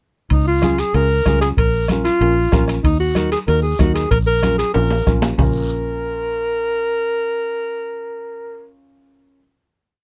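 A fiery, driving cumbia in straight 4/4 that lasts only a few seconds, built from a breathy alto saxophone melody up front with light vibrato and a soft, whispered attack, spinning short song-like motifs in pop style. Beneath it, a dark, round, foam-muted electric bass plays a cumbia bass figure from 0.3 to 9.4 seconds, while a worn, woody, slightly detuned upright piano enters at 0.6 seconds with rhythmic triad chords. The percussion section of soft-beater bombo with rim, ringing metal-shell timbales with bell, bright thin-skinned congas sitting in the background on off-beats, and a raspy, vintage guiro mixing long and short scrapes drives the groove until a drum fill at 4.7 seconds. The percussion then drops out at 5.5 seconds, leaving saxophone, bass and piano to hold a final chord. The sound is a dry, close 1970s-style studio recording touched with light reverb.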